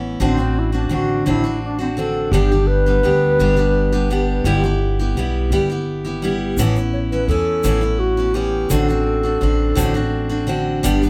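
The alto flute carries this nostalgic acoustic folk excerpt, its airy, straight-toned voice entering at 0.2 seconds with a soft attack and a close, slightly unsteady presence as it moves between C4 and C#5. Beneath it, a bright, full-bodied picked steel-string guitar and a woody pizzicato upright bass sit up front, setting a slow 6/8 pulse at 56 dotted-quarter beats per minute. The harmony drifts from D7/A through G and Em/G to Aadd9 before returning to D7/A, giving the short passage a gentle, reflective arc. A grainy tube shaker joins in the background at 6.6 seconds, adding a faint rustle of texture. A moderate small-room reverb gives the small band an intimate, homely warmth.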